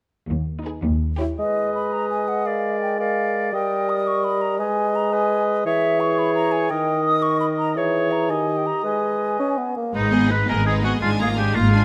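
A stormy, restless fragment of a fast romantic orchestral movement in 6/8 opens with rich cello and double bass sections at 0.3 seconds, soon joined by a bright, focused violin melody, a second violin line and smooth, even violas. At 1.4 seconds the strings fall away and the woodwinds take over: a clear clarinet, a pure, hollow flute and a distant, roomy oboe weave their lines over an up-front, mellow bassoon. At 9.9 seconds the lush, bowed strings return alongside the continuing oboe, all captured with close, detailed microphones and a light reverb.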